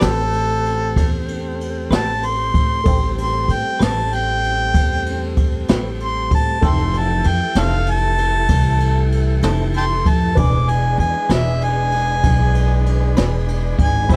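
Over a straight 12/8 slow-blues sway of brushed drums and a woody, thumpy upright bass, a clear, lightly overdriven harmonica takes a soulful, mournful solo with scooped notes and tongue slaps, while a clean semi-hollow electric guitar with harmonic tremolo, a slightly detuned upright piano and a smooth tonewheel organ turning through a slow rotary speaker fill in beneath, and a loose horn section joins with warm sustained chords at 6.6 seconds, all in a dark, dry production flecked with vinyl crackle.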